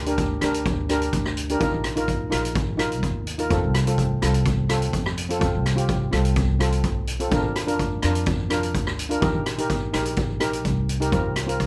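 A light reverb wraps this carefree, festive calypso fragment, where a dark, shimmering steel pan sits up front playing double seconds with medium rubber sticks. Beneath it, a woody, thumpy pizzicato upright bass on steel strings plays alongside an up-front street-band drum kit of boomy kick, hi-hat and rim click, heard in a small room with its top rolled off. Together they carry a straight 4/4 feel through Gm, Ebsus2, F, Bb and Eb to an Fsus4 at 11.1 seconds.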